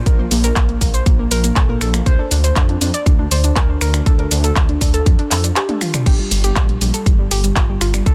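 Progressive house at 120 BPM, driving and bittersweet, with a punchy up-front electronic kick, a house kit of bright hats, cabasa, finger snaps, handclaps, toms and crash cymbal pumping in a small room, a deep, rumbling detuned saw bass pulsing beneath, and a soft, round pluck spinning mellow arpeggios through chorus, tape grit and digital delay, moving from Dm at 2.1 seconds to Gm at 6.1 seconds after a brief break and drum fill, all in a dense, heavily limited mix cut from a longer piece.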